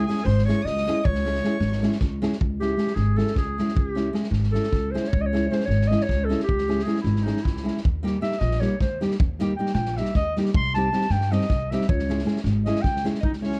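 A dark, lightly reverberant mix frames this fiery, virtuosic slice of Balkan wedding-band folk, racing at 310 BPM in eighths across a straight 7/8 in C# Hungarian minor. A distant, roomy clarinet with plate reverb carries the melody in a classical style and takes a solo from 2.4 to 13.2 seconds, while a rich, bowed violin with vibrato and portamento adds a soft second line that drops away at 2.0 seconds and briefly returns at the close. Underneath, a full-bodied, fingerpicked nylon-string guitar with audible finger squeak and a woody, growly pizzicato upright bass sit up front. A loose, gritty, saturated drum kit with a rolled-off top supplies a punchy kick and a medium-tuned snare over chords moving from C#m to D# and Cm.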